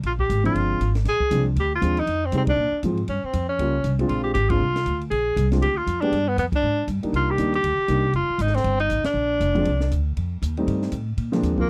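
Upright bass and a compact cocktail drum kit open this fast small-group jazz excerpt together, swinging in 4/4 at 237 BPM in Bb mixolydian with a sophisticated, relaxed air. The pizzicato bass sounds woody and sits up front, while the drums bring a natural small-room sound of hi-hat, ride, high-tuned snare and punchy kick under dark cymbals. A clear tenor saxophone takes the lead at 0.1 seconds, its vintage tone carrying a touch of vibrato in a solo jazz style close to the listener. A baby grand piano with a short sustain and a warm, natural colour joins in accompaniment at 0.4 seconds, moving through changes such as Bb9, Bbm69, Cm7 and F9. The whole band hits shared accents through the passage, and the dry, close studio sound has a 1970s character.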